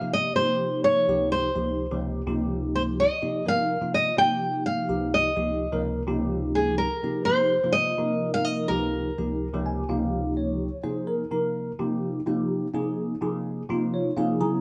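Played live in one room, this short cut from a longer jazz piece carries a moderate stone-room reverb and a softened top end. At a driving, intense 126 BPM in straight 4/4 and Bb dorian, a fingerpicked nylon-string guitar sits up front with a classical touch, fresh strings and audible finger squeak, carrying the melody until 10.3 seconds. A bell-like, clean tine electric piano with phaser supports it throughout, moving over Cm7, Dbmaj13 and Fsus2 before settling on Bb9sus4, and adds fills from 9.4 seconds and again near the end.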